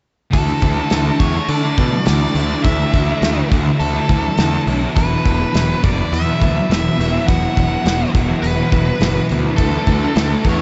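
A nasal lead guitar with a parked wah carries the melody in this blissful, wistful shoegaze and dream pop fragment, its overdriven tone trailed by tape echo. Beneath it, a thick fuzz guitar with distortion and ensemble chorus and a dark semi-hollow guitar with reverse reverb play riffs in the background, while a round, punchy fuzz bass sits up front. A loose indie drum kit with a tight kick, a medium-tuned snare and hi-hat sounds mid-forward and rolled-off at the top, as if played in a small room. The harmony moves from Dsus2 to Esus2 at 5.0 seconds and back at 9.6 seconds, when a very quiet, lo-fi guitar through a small old amp slips in with fingered arpeggios. The mix is soaked in huge ambient reverb with its highs gently capped, giving the straight rock pulse a hazy, dreamy glow.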